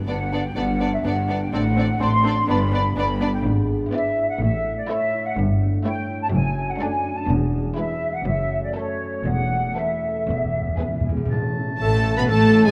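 Spirited and graceful, this rubato classical passage, cut from a longer piece, opens on a ringing, thumb-plucked concert harp in arpeggios over bowed double basses and cellos, while lush vibrato violins carry the melody with darker, distant violins, a pure, up-front flute ensemble and smooth background violas weaving second lines and accompaniment. Timpani struck with hard mallets enter at 7.3 seconds, sounding close and dry in the background, and play a fill that leads to 11.3 seconds, where a soft-attack oboe joins. Moments later a clear clarinet, a mellow bassoon and a tight French horn section add very quiet touches, all set in a moderate scoring-stage reverb.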